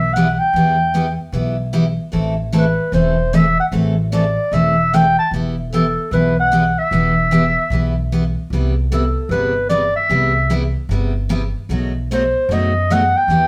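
A wet studio reverb wraps this short cut from a longer piece, with the trio playing live together in one room. It is fiery, virtuosic string swing in the gypsy-jazz manner, moving at 150 BPM in a swung 4/4 in E minor. A breathy clarinet carries the melody, its dark subtone, soft attack, vibrato and scooped notes giving a whispered, intimate jazz voice that still sits close in the mix. Beneath it, a pizzicato upright bass on gut strings adds a woody, thumpy low end, while a picked jumbo steel-string acoustic guitar enters at 0.2 s with full-bodied, fresh-stringed accompaniment. The harmony runs from Em through Am, back to Em, then Cmaj7, and lands on a tense B7b9 at 11.7 seconds as the excerpt closes.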